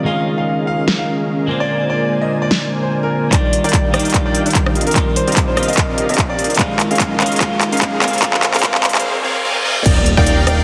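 Heavily compressed with a radio-like sound and a lush hall reverb, this euphoric, playful future bass excerpt in Eb major moves at 147 BPM in a swung half-time feel, opening with a twangy twelve-string electric guitar, a breathy background pad, a bold detuned polysynth riff and a clear concert grand piano melody with tape echo, all pumping against the sidechain. Up-front big-room drums with a huge snare, crisp hats and handclaps join shortly after, and a punchy electronic kick arrives at 3.3 s as filter sweeps drive a build-up over chords like Ebmaj9 and Cm11, topped by a very quiet riser and reverse cymbal. At 9.9 s an impact lands with a fat, nasal analog bass and a very quiet wave-folded unison pluck arpeggio.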